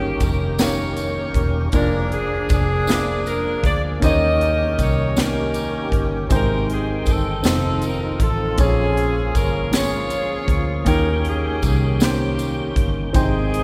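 A slow, straight 6/8 feel carries this hopeful, jubilant gospel passage, cut from a longer piece, where a warm saxophone section sits up front with jazz-style vibrato on the melody. A natural-sounding baby grand piano accompanies in the background, beside a full tonewheel organ holding sustained chords through light overdrive, chorus vibrato and a slow rotary speaker. A dark, round, foam-muted electric bass anchors the low end, while a polished drum kit with a high-tuned snare and punchy kick joins at 0.2 seconds alongside a jingly tambourine, all bathed in a long cathedral reverb.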